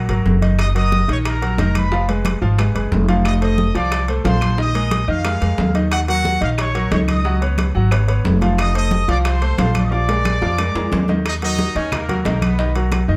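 Fiery and driving, this short salsa cut runs at 180 BPM in Eb minor, with a bright, tight trumpet section carrying the melody from 0.6 seconds over a clear, polished grand piano and a dark, thumpy pizzicato upright bass up front, while ringing congas, high-tuned bongos, woody claves and metal-shell timbales fill the percussion, and a drum fill from 9.9 to 11.3 seconds leads back into the Ebm7 under light reverb.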